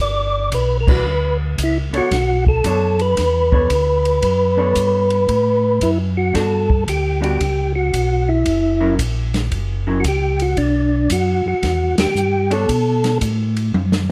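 A percussive tonewheel organ carries the melody from the outset in this bluesy, soulful soul jazz organ trio fragment, its lightly overdriven tone marked by third harmonic percussion, chorus vibrato, a fast rotary speaker and plate reverb. Beneath it a second tonewheel organ plays the bass line, round and clean, shaped by chorus vibrato and a slow rotary speaker, with both organs sitting up front. An open acoustic drum kit enters almost at once, airy and polished in a small room, with dark cymbals, a medium-tuned snare and a boomy kick, and the band strikes an accent together at 0.8 seconds. A vintage hollow-body electric guitar adds picked, clean accompaniment. The swung 4/4 groove moves through Em7, Bm9, Gmaj7, F#7, Bm and Em7 before arriving on Asus2, as a short drum fill closes things out at 13.7 seconds.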